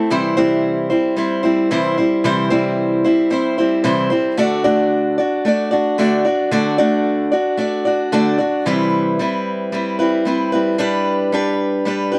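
A boxy, up-front old ladder-braced acoustic guitar, picked on its own with light reverb, carries this hopeful, jangly rock excerpt in a straight 4/4, moving from C to D and then, at 8.7 seconds, to Cmaj7 and G until the cut at 12.2 seconds.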